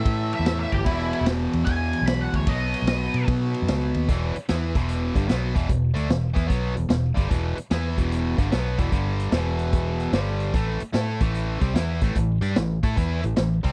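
A fuzzed, wah-inflected lead guitar with a slapback echo opens this gritty, swaggering cut of blues rock and southern rock, playing its short melody only until 3.3 seconds. Underneath, a bright, double-tracked overdriven guitar riff sits up front, joined by a round, foam-muted fingered bass and a vintage drum kit with dark cymbals and a tight kick, all moving at 149 BPM in 4/4 with a swung eighth-note feel. The dry, close 1970s-style studio sound carries light reverb as the chords shift from A5 through E and B into a stretch built on E5, G5 and A5.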